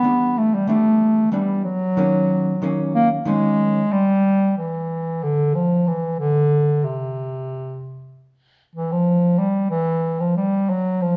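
Progressive instrumental in 7/8 with an intricate, driving feel, this excerpt puts a vintage, up-front bass clarinet on a classical-style solo melody for its full 11.2 seconds, backed until 3.8 s by dark, clean, compressed picking on a hollow-body electric jazz guitar over Em7 and D#m7 chords, after which the clarinet carries on alone, the band heard playing live together in a large studio bathed in wet reverb.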